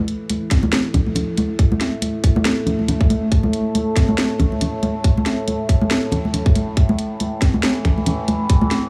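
A nasal, resonant drone with moving overtones opens this brooding, meditative deep dubstep excerpt, holding a sustained A5 chord in a chorused sawtooth-and-sine haze at 139 BPM with a swung, half-time feel. An overdriven, layered garage kit of finger snaps, hi-hat and cracking snare joins, alongside bright, close congas played with soft hands and sent through dub echo. A tight electronic kick arrives up front at 0.5 seconds, and the whole passage plays as a build-up in a small, dry room.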